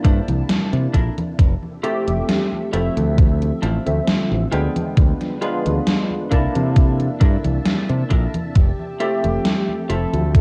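A thumpy, tape-warm electronic kick and a gated, overdriven drum machine of congas, hi-hat and snare set a slow, straight 67 BPM pulse for this nostalgic, faded vaporwave fragment in F major, where an up-front, bright fingered electric bass anchors barky, lightly overdriven tine electric piano chords with chorus and tape echo, a silky string machine hums softly in the background through phaser and ensemble chorus, a clean semi-hollow guitar riff shimmers with lush chorus and echo over jazzy Fmaj9, Dm9 and C13 harmony, and a whispered, breathy flugelhorn with sampler grit slips in at 8.6 seconds, all wrapped in a rough cassette demo sound with light reverb.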